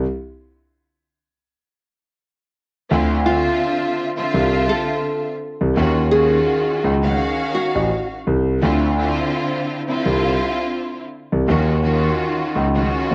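Boom-bap hip-hop at 84 BPM with a swung 16th feel and a tough, gritty mood: a dark concert grand piano with audible action noise carries the deep bass line alone before a lush, bowed string section with vibrato enters at 2.9 seconds over Dm9 and Ebm9 chords, while a fingerpicked nylon-string guitar with finger squeak plays a brief melody from 3.3 to 8.1 seconds, the strings and guitar both filtered and tinted by cassette tape in this light-reverb home recording cut from a longer piece.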